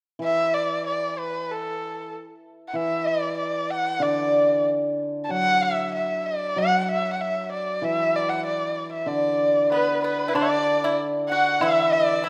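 The rhythm flows freely in rubato over a loose two-beat metre, giving this graceful, pastoral fragment of a Chinese chamber piece an unhurried, breathing quality. From 0.2 seconds a dark, woody erhu sits close and up front with the bowed melody, colored by vibrato and portamento. Beneath it, a mellow hammered dulcimer shimmers and rings in a low register, also placed up front. At 9.7 seconds a second erhu joins in the background with its own line, alongside a dry, percussive pipa played with fingerpicks. A very quiet woodblock enters close at 10.4 seconds as the music moves into a new section, all within the moderate reverb of a recital hall.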